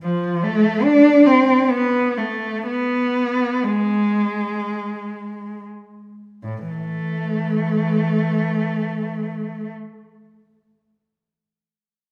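A single bowed cello opens this mournful, lonely classical fragment in A minor, its warm tone shaded with vibrato and portamento as it moves expressively through a free, rubato 3/4 between 29 and 73 BPM, slowing through the first 6.4 seconds and playing on alone until 9.7 seconds, set up front within the wet reverb of a scoring stage.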